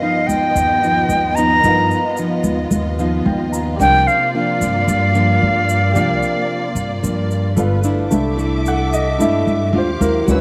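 An airy, up-front jazz flute with expressive vibrato carries the melody of this relaxed, romantic bossa nova at 111 BPM until 7.5 s, over full-bodied fingerpicked nylon-string guitar with audible finger squeak, a natural-sounding concert grand piano that adds a fill at 2.7 s and takes a solo from 8.1 s, lush bowed symphonic strings holding sustained chords, a woody pizzicato upright bass and a grainy, bright egg shaker, set in a moderate plate reverb.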